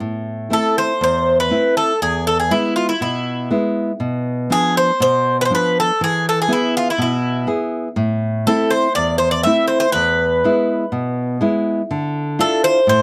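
In a straight 4/4 at 121 BPM, this tense, dramatic Greek folk excerpt in A harmonic minor sets a fingerpicked nylon-string guitar, classical in tone with audible finger squeak, under a bright, metallic bouzouki whose picked double strings carry the melody from 0.5 seconds, both up front in a dry, close 1970s-style studio sound with light reverb as the chords move from Am through E and Bdim to a closing Dmadd9.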